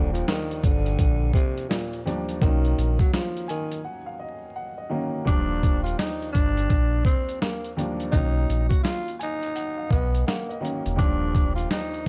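A dark production dusted with vinyl crackle frames this confident, nostalgic boom-bap hip-hop cut at 84 BPM in Eb major, swung on the sixteenths and taken from a longer piece. A pitched-down, compressed sampler kit with a thumpy kick and medium-tuned snare sits up front over a deep, sine-toned sub bass, while a woody, vintage upright piano with cassette-tape colour moves between Ebmaj9 and Bmaj9 chords. A breathy, raspy tenor saxophone carries the jazz-style solo melody with vibrato, scooped notes and a growl, and a break arrives at 3.8 seconds before the second section begins at 5.3 seconds.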